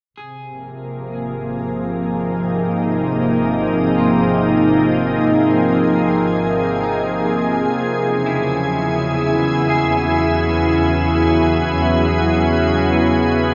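A bowed double bass section fades in with lush vibrato alongside a very quiet, dark, slightly broken-up picked electric guitar arpeggio at 0.2 s, before a pure, bright, up-front organ-like pad with ensemble chorus enters at 0.8 s on sustained chords, all in a huge reverberant space, giving this weightless, luminous free-time ambient excerpt in Ab mixolydian, tuned to A4 = 441 Hz, a shift from Ab to Esus2 at 7.8 s.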